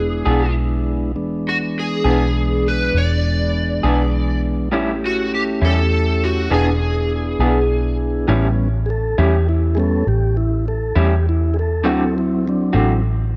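Gritty and rollicking, this slow blues in 12/8 moves at 67 BPM with a straight feel, heard in a short cut from a longer piece. An overdriven slide guitar carries the melody up front with a chorus effect, singing until it stops at 8.0 seconds. Beneath it, a mellow, flute-like tonewheel organ holds sustained chords with key click and a slow rotary speaker, then takes a solo from 8.3 seconds as the harmony shifts from E7 and A7 toward D7. A dark, foam-muted electric bass, round and punchy, anchors the low end, while a slightly broken-up, lo-fi electric guitar through a small old amp adds compressed, picked accompaniment with tremolo. Plate reverb soaks the mix, giving the whole a dreamy, vintage haze.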